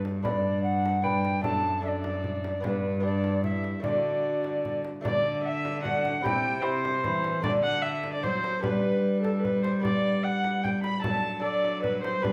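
A triple metre with a straight feel drives this courtly, festive renaissance-style consort dance, heard as a fragment of a longer piece. The alto recorder carries the melody from 0.2 seconds, its airy wooden tone marked by a crisp chiff on each attack and a touch of vibrato, set slightly distant. Alongside it the viola plays a second line and the cello holds the bass, both bowed by single players on period-style gut strings and placed up front, the viola reedy with a smooth top and the cello rich and reedy. A fingerpicked lute fills in the accompaniment with a delicate, warm sound from its doubled gut strings, some of them octave-doubled. A small, bright frame drum enters at 0.1 seconds, struck with hard hands. The whole consort sits in a wet recital-hall reverb that gives the dance an open, ringing air.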